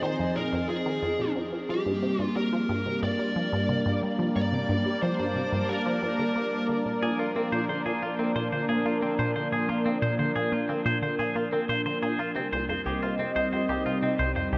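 A sweeping, warbling pad sits up front in this hypnotic, expansive slice of sequencer-driven ambient space music, its slow-attack sawtooth chords lush with chorus, all set in a huge, wet reverb space. Beneath it a squelchy, resonant blip pluck carries a low riff through phaser and delay, while a dark, overdriven lead guitar plays a picked, delayed melody until 6.7 seconds. At 7.0 seconds a bright, twangy electric guitar enters with clean, compressed arpeggios, also trailed by delay.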